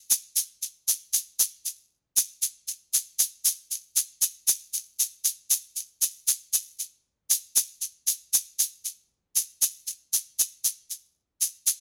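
An egg shaker opens the recording, heard alone and up front, carrying a bossa nova groove at 117 BPM in a straight 4/4. Its sound is grainy and bright, acoustic and captured close and dry, so every bit of detail in the shaking comes through plainly. The mood is breezy and relaxed, an easy pulse. The space around it is nearly dead, with little reverb to soften the attack. The shaker plays from 0.1 s to the end at 11.8 s, a brief stretch cut from a longer piece, with a new section beginning at 10.6 s just before it breaks off.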